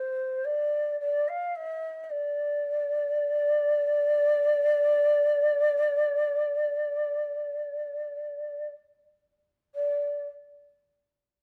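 A breathy, mellow ney carries this melancholic Arabic piece alone in free time, its end-blown reed-cane tone sitting up front with vibrato and tongued, slightly unsteady phrases between C5 and F5. Light reverb and close, detailed microphones frame the solo, lending it a longing quality. The music moves into a new section at 9.8 seconds, and the ney falls silent at 10.3 seconds in this fragment cut from a longer work.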